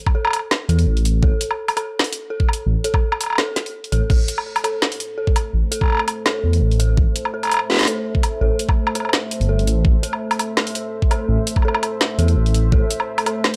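An eerie, inharmonic synth bell arpeggiates around A4 through chorus, phaser and tape echo to open this heavy, cinematic half-time drum and bass cut in A minor at 167 BPM; it is joined at 0.1 s by an overdriven, knocking electronic kick and a drum kit of woody snare, bright hats, crash cymbal and woodblock, then at 0.7 s by a rumbling, detuned sawtooth bass with tube saturation spanning G1 to E2, while a deep, moody pad with sidechain pumping and built-in reverb enters on sustained Am chords at 5.0 s, all set in a dry, gritty hardware recording.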